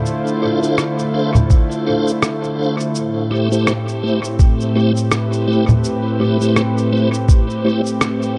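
A swung sixteenth-note feel at 83 BPM in 4/4 sets up this hazy, deep slice of ambient dub in A minor, cut from a longer piece. Electronic cabasa, rim click and congas arrive almost at once, sampler-style, compressed, pitched down and muffled, bathed in dub echo. A thumpy, up-front electronic kick joins at 1.5 s and drops out at 7.5 s. Throughout, a warm, up-front analog pad holds sustained chords from Dm7 to Am7, its detuned sawtooth tone smooth, soft in attack and long in release under chorus. A tonewheel organ punctuates with piping, scooped stabs, lightly overdriven, with key click, chorus vibrato, a fast rotary speaker and its own dub echo trails. The echo-heavy mix carries only light reverb, keeping every part close and present.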